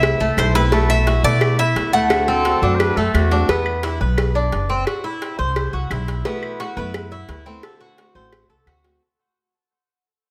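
A straight 4/4 pulse drives this sultry Cuban son and guajira piece, anchored by a thumpy, dark pizzicato upright bass up front, a tight, high-tuned cowbell, and woody claves set in the background. A bright, metallic tres carries the melody until 3.1 seconds while a second tres plays tape-echoed arpeggios throughout, a boxy parlour steel-string guitar picks an accompaniment, and a clear trumpet with light vibrato adds a brief second line from 2.3 seconds. The band sits in a moderate large-studio reverb and fades out from 3.5 seconds as the music moves into a new section.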